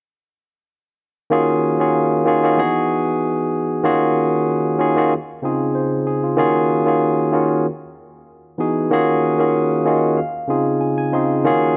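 Bittersweet and smooth, this cut from a longer soul piece at 95 BPM in Eb dorian, with a gentle 16th-note swing, features a solo tine electric piano, bright and barky, lightly overdriven through a combo amp and placed up front in light reverb, moving through Ebm11, Emaj9 and Dbmaj7 chords across two sections, with a fill from 9.6 to 11.4 seconds.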